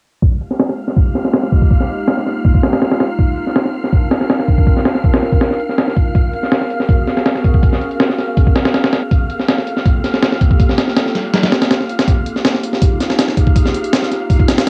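A gritty, up-front sampler-style breakbeat kit with a thumpy kick, high-tuned snare and low-pass-filtered hats drives this raw, atmospheric drum and bass and jungle excerpt, shaped throughout by a running filter sweep, while a nostalgic, warbling tape-like pad holds mellow, detuned minor eleventh chords and a breathy, dark wind-like noise texture hovers high above, the whole home cassette recording carrying light reverb and a lo-fi tape character.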